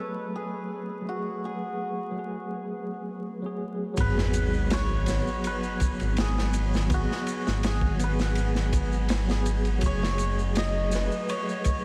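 This melancholic, smoky trip hop excerpt at 82 BPM in G# phrygian opens with a bright, shimmering hammered dulcimer melody over a tine electric piano with tremolo, sampler grit and tape echo, while a grainy, flickering texture hovers very quietly until 4.0 seconds. At that point a crunchy, saturated breakbeat kit with a tight kick and dark cymbals arrives up front alongside background maracas, a rumbling detuned saw bass and an electronic sub drop, moving from F#madd9 to G#m7 and back to F#madd9 at 9.8 seconds. A huge ambient reverb and vinyl crackle soak the mix in a dreamy haze.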